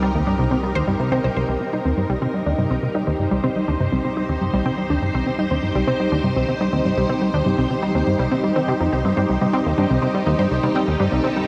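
Drenched in a huge, dark ambient reverb with an 8.0 second decay, this cut from a longer piece of sequencer-driven space music feels hypnotic and expansive, moving at 123 BPM in a straight 4/4 on a C minor chord. A vintage string machine sits up front, holding lush, bright sustained chords between Eb4 and C5 with a slow attack, colored by phaser, ensemble chorus and shimmer reverb. Beneath it, a punchy, funky analog bass riff spans C2 to G3, its wave-folded, ring-modulated tone snapping with a fast filter pluck before decaying into analog chorus, delay and shimmer. A detuned unison pluck with a noise layer spins glittering arpeggios from C3 to C5, each short note echoed through analog delay. Very quietly underneath, a nasal, evolving drone hums on C2 with pulse-width modulation and a long release, while a barely audible bubbling, resonant filter texture appears only until 1.5 seconds.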